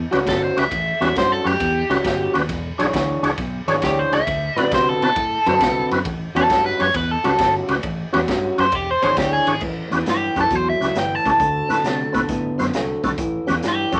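A swung 4/4 shuffle drives this swaggering, soulful electric blues, cut from a longer piece. A raw garage drum kit with a high-tuned snare, punchy kick and gritty, saturated small-room sound sits under a round, dark fingered electric bass, while a full, clean tonewheel organ with slow rotary speaker and chorus vibrato and a slightly broken-up, compressed guitar riff through a small old amp fill out the groove over A13, E13 and D13 changes. Up front, a biting overdriven guitar with phaser takes a picked solo through the first 9.6 seconds before the music moves into a new section.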